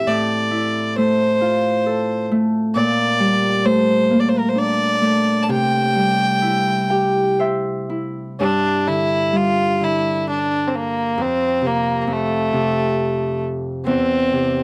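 Haunting and mournful, this short excerpt of a Celtic slow air in G dorian drifts in rubato 3/4 at 66 BPM, with a single up-front fiddle carrying the melody in a clear, biting tone with light vibrato and an airy bow, while a mellow, ringing fingerpicked Celtic harp accompanies throughout over chords such as Dmadd9/A and Gmadd9/Bb, adds a fill from 6.4 to 8.4 seconds before the second section, and sits in a modest booth ambience.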